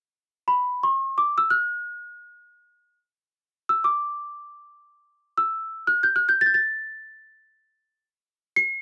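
A small celesta opens this short passage of Arabic music at 0.5 seconds and carries the melody alone in free time, in D maqam rast. Its bell-like, sweet tone comes from hard felt hammers, giving a bright, delicate sound that sits mid-forward and up front. The line stays high, moving between B5 and C7+50c. The mood is festive yet passionate, unfolding as a single section that runs to 8.8 seconds. The recording is dry and close, with little reverb, in the manner of a 1970s studio, so the celesta sounds intimate and immediate.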